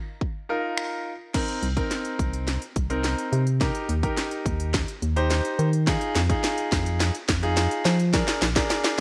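Dance-pop in C minor at 106 BPM, this energetic yet bittersweet passage is cut from a longer piece and moves in a straight 4/4. A layered electronic house kit sits up front from 0.2 s, its punchy kick, cracking snare and crisp hi-hats joined by finger snaps and crash cymbal. A clear concert grand piano carries the accompaniment between C4 and C5, its intimate, natural tone revealing audible action noise and deep low end while sidechain pumping makes it breathe with the beat. At 1.6 s a hollow, organ-like FM bass enters from Bb1 to F3, dark and percussive with a fast attack and decaying notes, and it pumps with sidechain compression too. From 1.3 s the track builds continuously under a running drum fill, as the harmony travels from a Bbsus4 opening through Cm7, Eb and Fm7 to a closing Bb7. Light reverb gives the upfront mix a touch of space.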